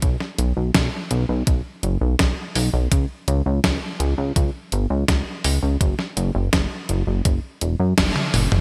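A bright, 1980s-style digital production with a light reverb gives this short synthwave cut a moody, driving character in a straight 4/4. Up front, a retro, glossy synth bass blends pulse-wave and sawtooth tones with pulse-width modulation, a fast-attack filter pluck and sustained notes, all thickened by chorus, tube saturation and sidechain pumping. A clean 12-bit drum machine supplies hi-hat, toms and a fat, forward snare with a sampler-style, tape-warm tone, set in studio ambience and gated reverb. Alongside it, a thumpy, sampler-style electronic kick sits in the same studio ambience until 8.1 seconds. Near the close, the band hits an accent at 8.0 seconds, and a drum fill carries the passage out from 8.2 seconds.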